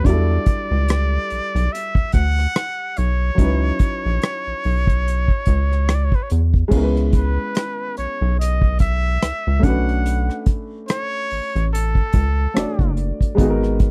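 Soulful and introspective, this short cut from a longer R&B and neo-soul piece sits in a relaxed 4/4 with a lightly swung sixteenth-note feel. A trumpet with a straight mute carries the melody in a nasal, breathy, whispered tone, shaded with vibrato and a slapback echo, until it drops out at 12.9 seconds. A baby grand piano accompanies in an intimate, natural voice, its action noise audible beneath warm, short-sustained chords rich in eleventh, seventh and ninth colours. The acoustic drum kit, played with bundle sticks, sits up front with a punchy kick, dark cymbals, hi-hat and rim click. A rubbery, hollow square-wave bass enters at 0.1 seconds with a bouncy filter pluck and tube saturation. The dry sound recalls a close 1970s-style studio, and the music moves into a second section at 6.7 seconds.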